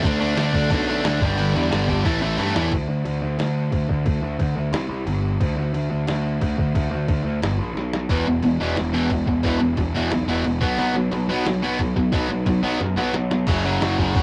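Rowdy and energetic, this punk rock excerpt at 178 BPM in 4/4 opens with a bright, double-tracked, overdriven stack guitar riff over D5, G5 and A5 that drops out at 2.7 seconds as the music shifts into half time, leaving a growly fuzz bass and a muffled, pitched-down sampler-style drum kit with a thumpy kick and drum fills until the guitar returns at 8.1 seconds on E5 and B5, all heard in a rough, warmly saturated rehearsal-room sound with wet booth ambience.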